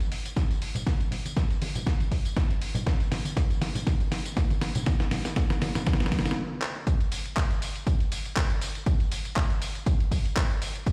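A swung sixteenth-note house groove in 4/4 sets a sensual, groovy mood, built from a gritty, compressed sampler-style kit of handclaps, hi-hat, fat snare and tambourine whose hats pump against the sidechain, joined by close acoustic congas and tambourine under a low-pass filter until 6.3 seconds. A punchy, tape-warm analog kick sits up front from 0.4 seconds, while drum fills and a filter sweep on the drums build toward a brief stop. At 6.9 seconds the drop arrives, with kick and kit carrying on through plate reverb and a stony room sound, as though played on a big sound system in a bare space.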